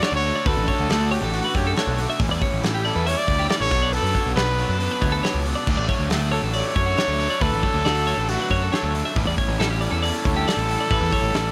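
A breathy, whispered trumpet with vibrato and slapback echo carries the melody from the first moment of this bright, wistful math rock and midwest emo excerpt at 138 BPM in D major, over clean, compressed twelve-string electric guitar arpeggios, an overdriven, double-tracked stack guitar riff, a loose indie drum kit with a punchy kick, fat snare and dark cymbals in a small room, and a round fuzz bass up front from 0.1 seconds, all moving through Dmaj7, A7sus4 and Bm7 under light reverb.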